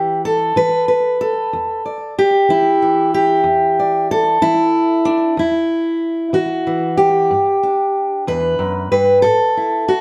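Reflective and wistful, this short folk excerpt in a slow 6/8 at 62 BPM features a single bright, up-front fingerpicked steel-string acoustic guitar spanning E2 to D5, touched with slapback echo and light reverb in a dark production, moving from an Asus4/E opening through a chordless passage at 5.4 seconds before settling on G at 7.3 seconds and A5 near the close.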